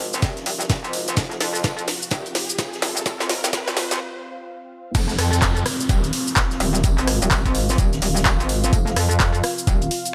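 Gritty and aggressive, this bass house cut from a longer piece runs at 127 BPM in F minor with a swung 16th-note feel, building up over a drum fill and a background riser and downlifter before a short break at 4.0 seconds and the drop at 4.9 seconds. An up-front metallic wobble bass, FM-driven, saturated and compressed with chorus and sidechain pumping, sits over a knocking layered electronic kick and an overdriven house kit with a cracking snare, handclaps, hi-hat, rim click, shaker and crash. Beneath them, a deep, moody analog pad of detuned sawtooth chords with a sub octave and slow attack pumps softly, while a distant, roomy acoustic big-band kit of hi-hat, snare and tambourine adds a very quiet swing in a mix with little reverb.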